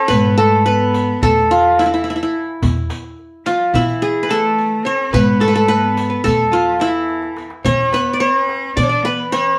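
Melancholic and longing, this short cut from a longer Turkish makam ensemble piece moves in a straight 9/8, with a bright, fingerpicked qanun carrying the melody up front over a smooth, vibrato-rich bowed cello and a dark, clean archtop guitar sitting in the background as second lines. An upright bass plucks woody low notes beneath, while a clay-shelled darbuka and a vintage riq with dark jingles keep time, breaking into a drum fill at 7.1 seconds. The band plays live together in one room, wrapped in moderate studio reverb.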